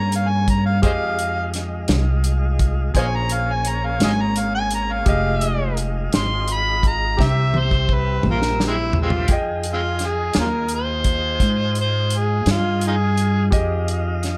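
Light reverb surrounds this smoky, brooding slow blues in F minor, cut from a longer piece and moving at 57 BPM in a straight 12/8. Up front, a gritty, overdriven harmonica with plate reverb carries the melody in a jazz style, full of tongue slaps, scooped notes and light vibrato, and a drum fill from 7.2 seconds on the small-room soul kit, with its tight kick and rolled-off top, leads into the harmonica's solo at 9.3 seconds. Beneath it, a woody pizzicato upright bass plays the bass line, a bright concert grand piano adds accompaniment, and a smooth tonewheel organ holds sustained chords through a slow rotary speaker as the harmony moves from Bbm7 and Fm7 to C7.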